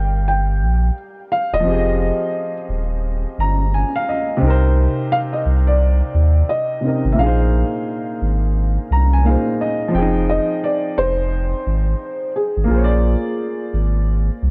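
Dark, hazy studio ambience wraps this reflective lo-fi hip hop passage, cut from a longer piece, which moves at 87 BPM in 4/4 with a lazy 16th-note swing and sits in F dorian. A woody, vintage-toned upright piano carries the accompaniment up front through a cassette-tape tint and a low-pass filter, its smooth voicings moving from Gm7 to Fm7 and Cm7 before returning to Fm7 and closing on Bb7. Over it, a felt-muted upright piano plays the melody in a soft, boxy, intimate voice, also filtered, and falls silent at 13.7 seconds while the accompaniment carries on. A deep, round sine sub bass with a fast attack and sustained notes sits prominently underneath, giving the low end a rounded weight. Short piano fills at 3.0 and 8.6 seconds punctuate the phrasing, the second leading into a new section that begins at 9.9 seconds.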